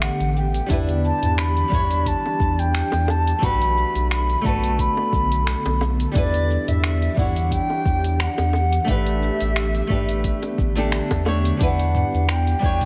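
Sunset chillout at 88 BPM in E dorian, smooth and warm with a light 16th-note swing, where a distant, pure wooden baroque flute with unsteady vibrato carries the melody over fingerpicked flamenco guitar, both touched with digital delay, an ethereal detuned pad with chorus and reverb sitting in the background, a deep round sine sub bass, an overdriven R&B kit of finger snaps, hi-hat, shaker and toms, a soft overdriven electronic kick entering at 0.7 seconds, and tight, high-tuned, dry bongos playing from 2.3 to 11.4 seconds, all moving through Em7, Bm7 and A9sus4 chords in this short cut from a longer piece.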